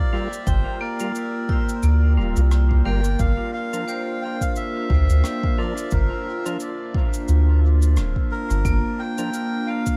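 A reedy, breathy melodica melody opens this meditative, hazy ambient dub excerpt in G dorian at 88 BPM, trailed by tape echo and set over a warbling, lo-fi pad of detuned sustained chords with chorus and built-in reverb, while a vibraphone struck with hard mallets spins metallic, ringing arpeggios through the same tape echo. A lightly overdriven tonewheel organ adds percussive stabs with chorus vibrato, a stopped rotary speaker and dub echo in the background, and airy cabasa and rim click enter at 0.3 seconds with their own dub echo. From 0.5 seconds a round, soft sub bass and a deep, tape-warm electronic kick sit up front, giving the swung 16th-note groove on a held Gm7 its weight.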